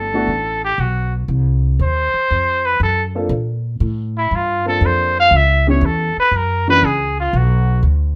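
Sophisticated and swinging, this brief excerpt of small-group jazz moves at 119 BPM in 4/4 with a swing feel, the chords running from Gadd9 through Bbmaj7 to a closing Bm. A breathy, vintage-toned trumpet takes the melody as an up-front solo with light vibrato, while an upright piano with woody, long-sustained voicings accompanies until 6.8 seconds. Underneath, a pizzicato upright bass on gut strings sounds dark and thumpy, sitting close in the mix and carrying on to the end at 8.2 seconds, all set in a light reverb.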